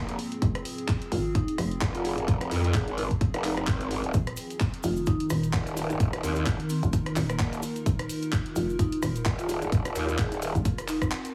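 A growling, wobbling bass sits up front, saturated and bright, pumping against a punchy layered kick and a hollow, knocking FM bass in this gritty, bouncy bass house excerpt with a swung sixteenth feel. Soft-mallet vibraphone carries a mellow, ringing melody through dub echo, while an evolving sawtooth pad and a warbling, nostalgic tape-like pad with phaser sit in the background, shifting from Fm to Ebsus2 at 4.1 seconds. Handclaps, hi-hat and rim clicks fill out the groove, a grainy cabasa joins at 4.1 seconds, and the whole mix is squeezed into a heavily compressed, radio-like sound with small room ambience before a break at 11.1 seconds.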